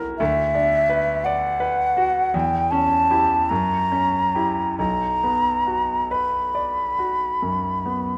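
In a slow, rubato 12/8 with a dotted-quarter pulse of 45-57 BPM, this short romantic classical passage in B minor sets a solemn, yearning mood for flute and grand piano. The airy concert flute enters at 0.2 s and sings the melody with vibrato and tongued notes, sitting up front and above a bright grand piano accompaniment whose deep bass and short sustain move through Bm/D, C#dim/E and F#7b9 before settling back on Bm at 4.8 s. Close, detailed microphones and light reverb keep both instruments present and intimate.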